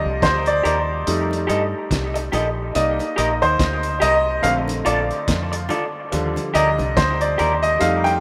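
A bright baby grand piano leads this short lovers rock reggae excerpt, taking a brilliant, up-front solo across the whole 8.2 seconds, its notes trailed by dub echo. Underneath, a deep dub fingered electric bass sits dark and round, foam-muted and punchy, while a cloth-damped drum kit comes in at 0.2 seconds with a fat snare, tight kick and hi-hat, muffled and gritty with a rolled-off top. An electric guitar through a small old amp adds slightly broken-up, compressed stabs from 0.6 seconds, bathed in spring reverb and dub echo. Low-tuned bongos played with soft hands join very quietly at 1.3 seconds. At a relaxed 71 BPM in 4/4 with a swung sixteenth feel, the mood is smooth and bittersweet as the chords move from Ebmaj7 through F9, Cm7 and Bbmaj7 back to Ebmaj7, all in a rough home demo mix with light reverb.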